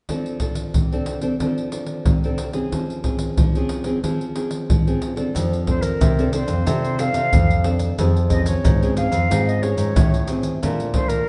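A wet, large studio reverb surrounds this band playing live in one room, and the top end is softly rolled off, giving the recording a mellow glow. It is a festive, sunny samba and choro excerpt in F major at 91 BPM in a straight 4/4, tuned slightly flat of standard pitch. From the opening, a dark, woody, full-bodied nylon-string guitar sits up front, fingerpicking the accompaniment with a deep classical tone, while a tight surdo, pandeiro and maracas play alongside it with hard hands and live-room presence. At 5.3 seconds a second, brighter nylon-string guitar with fresh strings enters, fingerpicking the bass line, and at 5.7 seconds a distant silver concert flute brings in the melody with an airy, straight tone and crisp attack. The harmony moves between F6 and Dbmaj7/F before settling on Bbmaj7 as the passage breaks off.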